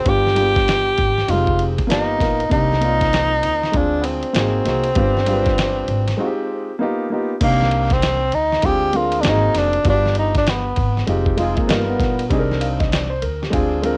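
Jazz-hop with a nocturnal, cool mood, cut from a longer piece and heard with light reverb on a cassette home recording, as a breathy, whispered tenor saxophone carries the melody with vibrato and scooped notes over up-front grand piano, woody pizzicato upright bass with transformer saturation, and a gritty, compressed sampler-style drum kit with a thumpy kick, swung sixteenths and a break at 6.2 seconds. The saxophone drops out at 11.1 seconds, and a mellow trombone with light vibrato slips in for a brief, intimate line from 11.4 seconds as the minor-key changes circle back.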